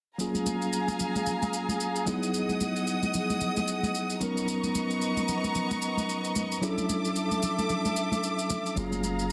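Soulful and warm, this short amapiano cut from a longer piece moves with a gentle swing through lush major-ninth chords, F#maj9 to Emaj9, Bmaj9 and Dmaj9 before returning home. A mellow, clean tine electric piano and an intimate bowed string section with vibrato and a soft attack sit up front, while a produced electronic shaker re-recorded in a small room ticks along quietly beside damped, high-tuned congas played with soft hands in the background. At 8.8 seconds a deep, punchy sine sub bass drops in with a pitch-drop attack, all held in light small-room reverb and a dense, heavily limited modern master.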